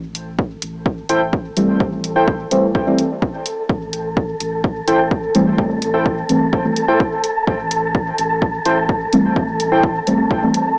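Heard through a small speaker from a cassette home recording, this hazy, hypnotic dub techno passage sits in a moderate spring reverb and is cut from a longer piece. A dry, punchy kick sits up front beside dark, layered hi-hats, while a round, deep analog bass moves between A1 and C2 beneath them over a single A minor seventh chord. From 1.1 seconds, warbling lo-fi synth keys carry a nostalgic riff through chorus and dub echo. A mellow, detuned chord stab joins at 1.6 seconds with phaser, chorus and dub echo, and a filter sweep runs over it for the whole length. An airy, breathy noise texture like wind drifts in on one tuned note with its own reverb, and the bass, keys, stabs and noise layer all breathe with sidechain pumping.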